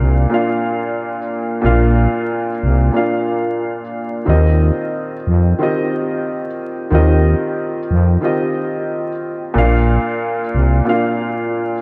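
Nostalgic and dreamy, this hip hop fragment from a longer piece moves at 91 BPM in 4/4 with a swung 16th-note feel, in Eb major and tuned slightly flat to A4 = 438 Hz. A dark, woody upright piano carries the accompaniment through Bb, Eb6 and back to Bb, its worn, slightly detuned tone coloured by cassette tape and filtering, with audible action noise and long sustain. Beneath it, a thick, growling FM bass sits up front until it drops out at 10.8 seconds, leaving the piano alone in a mix soaked in lush hall reverb and vinyl crackle.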